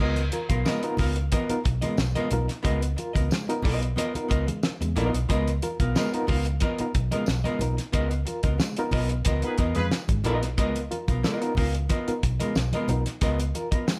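Funk excerpt at 91 BPM in Db mixolydian with a strutting, gritty mood, built on a dark hollow-body archtop guitar up front, barky, lightly overdriven electric piano stabs with fast tremolo, a round, foam-muted fingered bass, a cloth-damped drum kit with a fat snare and tight kick, soft-handed congas and a jingly tambourine tucked into the background, while a band accent at 7.9 seconds brings a brief, mellow, distant horn section line at 9.4 seconds, all set in a moderate large-studio reverb over a Db13 chord.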